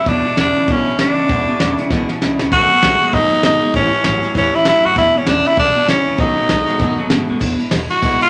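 A moderately reverberant large-studio sound with a muted top end frames this upbeat, retro rockabilly excerpt in E mixolydian, swinging at 196 BPM. Up front, a raspy, gritty tenor saxophone carries the melody with vibrato and scooped notes. Behind it sit a bright, picked jumbo acoustic guitar with fresh strings and finger squeak, a twangy, slightly broken-up electric guitar riff that stops at 7.4 seconds, and a woody, thumpy pizzicato upright bass on gut strings. A soft, dark brush kit with a fat snare and tight kick plays a fill at 1.9 seconds as the chords move from E7 through B7 and A7 and back.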